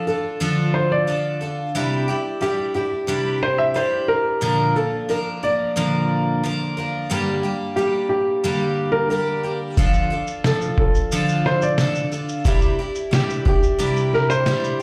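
Wistful and reflective, this acoustic pop piece in D minor moves at 90 BPM in a straight 4/4, with a woody upright piano carrying the melody over a shimmering, octave-doubled twelve-string acoustic guitar, both touched by slapback echo as the chords cycle through Dm, Cadd9, Bb and Gm. At 9.8 seconds a muffled, pitched-down sampler-style drum kit enters up front with a thumpy kick, fat snare and shaker. The recording sounds like a live gig heard through the venue's PA, wrapped in moderate club reverb.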